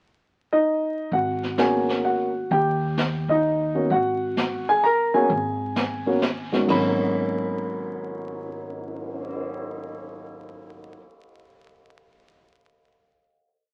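A mellow concert grand piano leads this moody, cool jazz trio piece in a swung three, entering alone at 0.5 s with a short pickup. Its motif-based melody unfolds in balanced phrases, partly doubled in octaves, while syncopated comping in rootless voicings fills out the harmony. The piano sits up front with a deep, shadowy low end. At 1.1 s the pizzicato upright bass joins with a woody two-feel line, and the acoustic brush kit enters alongside it with snare sweeps, hi-hat, a high-tuned snare, a boomy kick, somber cymbals and a cymbal swell. The harmony moves from G#m11 through D# and G#7sus2 before returning to G#m11 for a held final chord, where the drums drop out at 9.4 s. The whole recording carries the crackle and aged tone of a very old 78 rpm record, set in moderate studio reverb.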